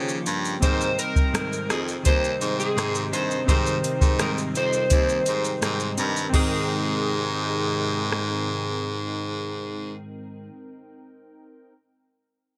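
A soft vintage rhythm box sets a straight 4/4 pulse with deep kick, metallic hi-hat, rim click, shaker and crash cymbal under gated reverb, sitting up front until it stops at 8.3 seconds. An edgy, punchy baritone saxophone carries the bass line with vibrato, while an electric slide guitar sings the melody through lush chorus with a slightly broken-up tone, and a clean, direct-recorded electric guitar adds compressed, picked accompaniment with subtle chorus and vibrato. In the background, round, detuned analog keys with a filter sweep and a smooth, warbling sawtooth pad fill out the Eb9 to Abmaj7 harmony, giving this sunny, dreamy bedroom-pop piece a bright 1980s-style digital sheen in light reverb.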